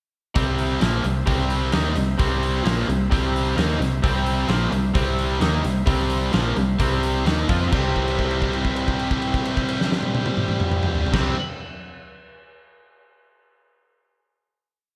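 A straight 4/4 drive at 130 BPM powers this sunny classic rock piece in C mixolydian, where a big, dark-toned rock kit with a fat snare and punchy kick backs a crunchy, up-front overdriven guitar and a tight, bright distorted guitar both picking a power-chord riff, a round, hollow-body fingered bass doubling that riff in driving eighth notes, and a very quiet, lightly overdriven tonewheel organ with key click and slow rotary speaker holding chords, all in a big arena sound with recital hall reverb until the riff gives way at 7.7 s to a final held chord.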